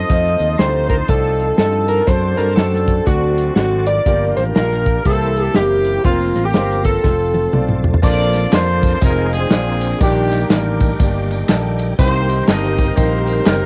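A swung 121 BPM groove in 4/4 drives this jubilant, reverent uptempo gospel excerpt, set by an up-front soul drum kit with a dry, dark sound, tight kick, medium-tuned snare and dusky cymbals under a rolled-off top, plus a drum fill from 7.0 seconds. A punchy fingered electric bass sits up front beside it, its tone rounded by transformer saturation. A clear horn section with pop-style vibrato carries the melody throughout, joined at first by a dark, slightly broken-up slide guitar played with fingerpicks that drops out at 7.8 seconds. Behind them, a smooth tonewheel organ holds sustained chords through a fast rotary speaker and chorus vibrato, while a natural-sounding grand piano adds background accompaniment. At 8.0 seconds, compressed, saturated tambourine and group handclaps join as the harmony moves from an F7-based opening toward Bbmaj9, Ebmaj7 and Cm7. Light reverb and the hiss and colour of a home cassette recording give the whole piece a homespun, warm feel.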